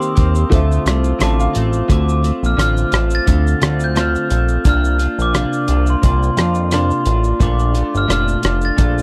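This hazy, wistful bedroom-pop excerpt in D minor opens at a relaxed 87 BPM with a light sixteenth-note swing. A bell-like glockenspiel melody, struck with soft plastic mallets and given subtle chorus and slapback echo, sits over clean, compressed, direct-recorded electric guitar warbling with analog chorus and pitch drift, a dark, cloth-damped drum kit of tight kick, hi-hat, rim click and shaker, and an intimate, woody upright piano carrying cassette-tape colour and audible action noise. The piano plays a fill in the background before dropping out at 1.9 seconds, while a fat, nasal, detuned sawtooth bass with a filter sweep and moving notch sits up front from 0.2 seconds as the chords pass from Eb6 to Dm7 to Bbmaj7 in a dry, close mix.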